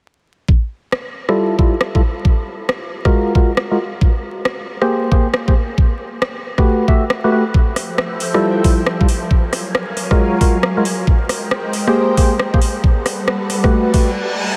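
A soulful, bouncy two-step UK garage excerpt at 136 BPM with a swung sixteenth feel: a knocking, up-front electronic kick and a garage kit of metallic hats and rim clicks lay down the groove as a hollow, dark organ stab, dressed in chorus, cassette-tape grit and analog delay, cycles through lush major-ninth chords (Fmaj9, Gbmaj9, Abmaj9, Gmaj9), joined at 7.8 seconds by a silky, sidechain-pumped string machine with phaser and ensemble chorus, all soaked in dreamy reverb and vinyl crackle until a reverse cymbal sweeps into a brief break at 14.2 seconds.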